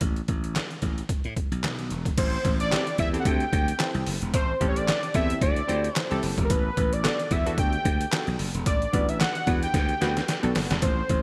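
A gritty, pitched-down sampler-style drum kit drives this late-night, funky slice of early-eighties boogie funk, its thumpy kick, medium-tuned snare, handclaps, hi-hat and crash pushed up front with overdrive and compression. Running at 111 BPM in 4/4 with a 56% swing on the sixteenths, the groove opens on a rootless Esus4 with the drums and a growly, punchy slap bass, whose bright, direct-amped tone sits close alongside the kit. At 2.2 seconds a fat analog lead enters, its detuned sawtooth voice thickened by a sub octave, shaped by a filter sweep and colored with vibrato, as the harmony moves to D7sus4 and later settles on Gmaj7. A funky sawtooth polysynth comp joins just after, its fast attack and filter sweep given a shimmer of chorus underneath the melody. A drum fill arrives near the end before the cut, all set in light digital ambience with a bright 1980s-style production.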